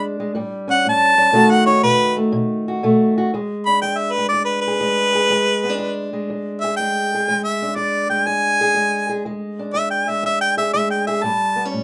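A dark, boxy parlour steel-string guitar opens this rollicking, soulful piece of acoustic country blues, fingerpicked up front at a swung 122 BPM in E mixolydian. A clear, close-miked harmonica enters at 0.7 seconds and takes a jazz-style solo through 3.3 seconds, its vibrato and scooped notes carrying the melody over A7 and B7 before the second section settles onto E7. Light reverb surrounds the pair in this cut from a longer performance, which returns to A7 near its close.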